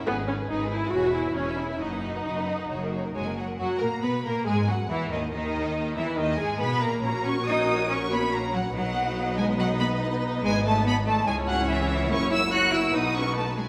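A rich, focused violin section sings the melody over a second violin line, lush symphonic violas, clear, intense cellos and smooth, even double basses in this lively, cheerful classical-period string orchestra excerpt in B major at 141 BPM, played with rubato in a wet concert hall, shifting into a new section at 3.6 seconds and closing on a cadence through F#7 to B.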